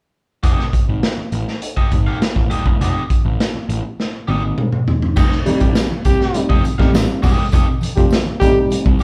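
A raw, up-front garage drum kit with punchy kick, dark cymbals and vintage 12-bit sampler grit drives this gritty, energetic funk cut at 102 BPM in F mixolydian, with a fuzz-drenched picked electric bass and a bright, crunchy overdriven guitar holding down a rootless F9 in a live-room sound. A drum fill at 4.0 seconds leads into a fuller second passage at 5.2 seconds, where very quiet low-tuned congas and a jingly tambourine join and a worn, slightly out-of-tune tine electric piano adds overdriven stabs. From 5.6 seconds a brilliant, forceful trombone with vibrato sings a second line over the F9.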